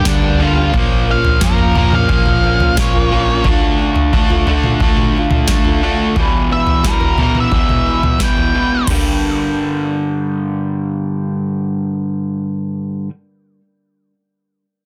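A dark octave-fuzz lead guitar solo with analog delay opens this angsty, brooding quiet-loud alternative rock excerpt in G minor at 88 BPM, over a bright, crunchy overdriven riff up front and a boxy old ladder-braced acoustic guitar picking delayed arpeggios in the background, while a round, punchy hollow-body short-scale bass plays only until 3.4 seconds and a booming analog drum machine, with its deep kick and crisp, soft-clipped snare re-recorded in a small room, drives on until 9.0 seconds, leaving the two rhythm guitars to carry the dense, heavily limited, nearly reverb-free mix to the end.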